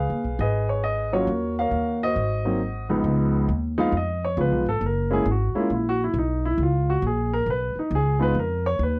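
A natural, up-front grand piano leads this relaxed, warm jazz trio piece, cut from a longer work and swinging at 136 BPM in 4/4 in Db mixolydian over Db9, Ebm7, Ab7 and Gb9 chords, taking a solo from 3.0 s to 9.0 s while a woody, growly pizzicato upright bass on steel strings sits close beside it, in a dry, close 1970s-style studio recording touched by light reverb.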